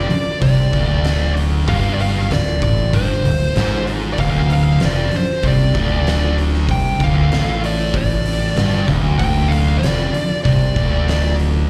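A dark, compressed fuzz lead guitar with slapback echo carries the melody in this heavy, sludgy stoner and doom metal excerpt at 96 BPM in D minor, set over a Dm chord. Beneath it, two thick fuzz guitars pick the low riff, one distorted and the other very quiet and warm, while a growling fingered electric bass, bright and overdriven, sits loudest in the mix. An oversized low-tuned acoustic drum kit with a fat snare, boomy kick and gritty saturation in a pumping stone room plays hi-hat, kick and snare from 0.1 seconds, all heard as a live gig through the venue's PA with light club reverb.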